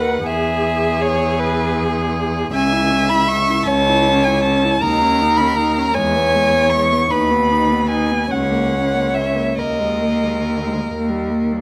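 Close, detailed microphones in a moderate concert-hall reverb frame this melancholic, yearning slow romantic movement for string quartet, cut from a longer piece, which sways in a rubato 6/8 at 45-54 BPM as a rich, vibrato-laden first violin sings the up-front melody until 10.9 s over a smooth second violin line, a dark viola accompaniment with soft attacks and expressive portamento, and a clear, even cello bass, the harmony moving from E through C#m and settling from D#sus4 to D#.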